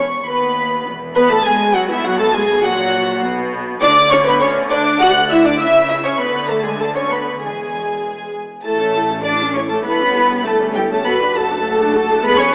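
A quick, cheerful classical-period movement for string orchestra opens with all five sections bowing together from the start, moving at 101 BPM in a straight 2/4 and settling into A major from 3.8 seconds. Up front, the violins carry the melody high, from E5 to F#6, with a floating, pure tone and soft attack, while a darker, more distant second violin line sits beneath them. Violas fill in the accompaniment with a woody, smooth-topped sound, and the cellos and double basses share the bass, the cellos close and intimate with light vibrato, the basses deep down to E1 and quieter still. Every section plays sul tasto, giving the lively music a gentle, veiled surface, and the harmony travels through chords such as Esus4, C#m and E before arriving on A at 8.6 seconds and moving on to A7/G and D/F#. A wet scoring-stage reverb of 1.9 seconds blooms around the ensemble, yet the whole is filtered through a thin AM radio sound, and the passage is cut from a longer piece, ending at 12.5 seconds.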